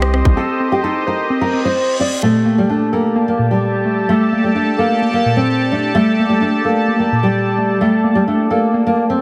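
A dark, thumb-plucked nylon-string guitar with fresh strings sits up front, carrying a classical-toned melody between G3 and D5 over this eerie, hard-hitting hip hop passage in G minor, cut from a longer piece. The tempo is 129 BPM in 4/4 with a half-time feel, and the harmony moves from Cm to Gmadd9 at 2.2 seconds. Beneath the guitar, a warbly, dusty, lo-fi pluck built from detuned square and sawtooth waves with a noise layer adds decaying accompaniment, its filter sweeping and chorus thickening its tone. Higher up, a bright, sweeping resonant pad of detuned sawtooth holds sustained chords with a slow attack and filter swell, also treated with chorus. An electronic reverse cymbal rises from 1.4 to 2.2 seconds to usher in the new chord. Light reverb and digital ambience surround the parts, and the master is dense and heavily limited in a modern style.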